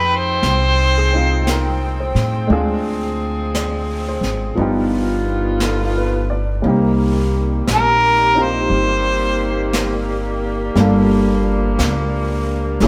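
The band sounds as if it is playing live together in one stone room, its reverb wet enough to leave a soft halo around the notes. This is a wistful, intimate jazz ballad in a gentle swing, cut from a longer piece. A vintage-toned harmonica carries the solo melody up front, mellow with light vibrato and scooped notes, until it drops out at 10.0 s. Beneath it, a grand piano plays clear accompaniment with audible action noise, and a tight saxophone section holds sustained chords with a soft attack and vibrato. An up-front pizzicato upright bass adds a woody low end, and a brush drum kit enters at 0.4 s with brushed snare and hi-hat. The harmony moves from Fm9 through Dm7b5 and G7b13 to Cm7, settling on Gm7 near the end.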